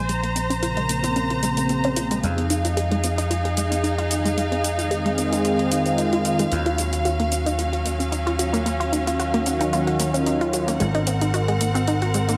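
Sensual and sleek, this nu-disco excerpt at 112 BPM with a light 16th-note swing sets lush, bowed, up-front studio strings holding sustained chords over a punchy, amped vintage slap bass, while a detuned sawtooth unison pluck with ring modulation spins tape-echoed arpeggios under a filter sweep, bright overdriven electronic hi-hat and shaker add reverb and echo, and a smooth, warbling analog pad with chorus and its own filter sweep enters at 0.5 s and drops out at 11.3 s, all moving through Bbm9, Fm7, Ebm9 and Ab9 in an echo-heavy mix with spring reverb.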